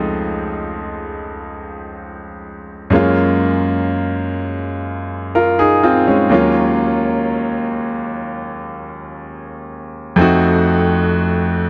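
Romantic and tender, this brief R&B passage from a longer piece features a solo grand piano, brilliant and up front, drifting through rich Dbmaj9, Gbmaj9 and Ebm9 chords before settling on a tense F7b9 at 10.2 seconds, bathed in a lush hall reverb.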